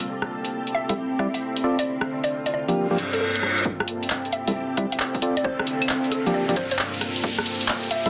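A silky string machine, a deep, moody pad and an up-front, punchy analog drum machine of claves, handclaps, hi-hat and rim click open this bouncy, late-night two-step UK garage cut at 134 BPM in A phrygian, swung on the sixteenths, with a filter sweep running over Am7, Dm7 and Gm7 chords and both the strings and pad pumping to the sidechain. A woody, mellow mallet-like pluck carries the melody through phaser and dub echo, while a hollow, dark organ stab arrives with cassette-tape grit and its own echo. A reverse cymbal at 2.9 seconds leads into a build-up where a tape-warm electronic kick enters at 3.7 seconds, a riser climbs and a filter sweeps the stab, all within a small, wet room and a dense, heavily limited master.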